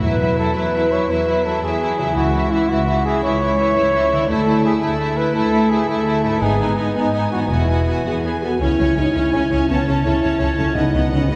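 A straight 12/8 pulse at 112 BPM drives this triumphant, adventurous cinematic cue in E major, where a lush, warm violin section sings the melody over a richer second violin line, intense violas sit in the background, and ringing thumb-plucked harp arpeggios join close cellos and smooth, even double basses, while a soft-attack solo trumpet stands up front with stabs until 8.0 s, a mellow horn section enters with sustained chords from 8.1 s, and very quiet, round soft-mallet timpani mark the opening and 10.7 s, the whole heard from further back in a reverberant concert hall.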